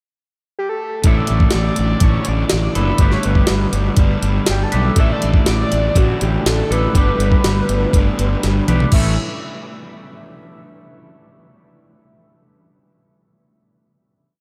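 A straight 4/4 pulse at 121 BPM drives this short, carefree indie rock piece, set in a dreamy mix soaked in cathedral reverb. An overdriven synth lead opens at 0.6 seconds in the pickup bar. It is a gritty, screaming voice built from sawtooth and square waves with a sub octave, ring modulation, vibrato, phaser and tape echo, and it spins motif-based phrases between F#4 and E5. At 1.0 seconds a sampler-style jungle kit arrives up front, compressed and pitched up with a thumpy kick and high-tuned snare, alongside a fuzzy fingered electric bass pushing driving eighth notes, also up front. Two picked electric guitars sit in the background playing ringing chords with subtle chorus: one crunchy and overdriven, the other twangy and bright with tape echo. The jangly harmony moves between Asus4 and Gadd9 until a drum fill leads into a closing A chord at 8.9 seconds, which hangs in the long reverb.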